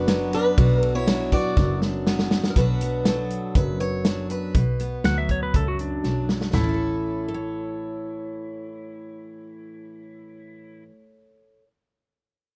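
Honky-tonk and classic country at 121 BPM in A major, heartfelt and nostalgic, this short excerpt sets a boxy, picked swing-style acoustic guitar melody over bright, fresh-stringed steel-string picking and a bowed, soft-attack double bass, with a punchy natural drum kit up front playing until 6.6 s and adding fills along the way, while a twangy pedal steel holds brief chords at the start and a very quiet second pedal steel line enters at 5.1 s, all captured close and dry as the harmony moves from B minor to A at 6.5 s.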